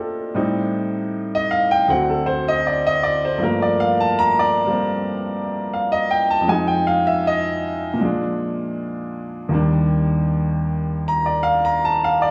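A wet, large studio reverb about 1.2 seconds long surrounds this live room recording, which is cut from a longer piece. It is solo jazz in G minor at 78 BPM in 4/4, with a 68% swing on the eighth notes and a swinging, late-night mood. A lone upright piano with a woody, vintage tone, smooth and long in sustain, sits up front and plays alone from 0.0 to 12.3 seconds across a range of D2 to Bb5. The harmony moves through Am7b5, D7 and Gm9, then through Fm7 and Bb7 before settling on Ebmaj7 at 9.5 seconds. The piano is tuned with A4 at 444 Hz.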